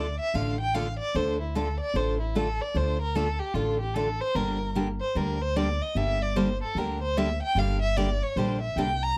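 A lightly reverberant, close-up recording captures a fiery, swinging stretch of acoustic string swing in the jazz manouche style, cut from a longer piece, moving at 150 BPM in 4/4 with swung eighth notes, tuned to A4 = 438 Hz. A single bowed violin, given a plate reverb, carries the melody as a solo for the full 9.2 seconds, its warm, smooth-topped tone shaped by expressive vibrato and portamento. A bright, picked steel-string acoustic guitar provides accompaniment, and a dark, woody, thumpy pizzicato upright bass on gut strings anchors the harmony as it moves from D minor to G minor at 4.4 seconds.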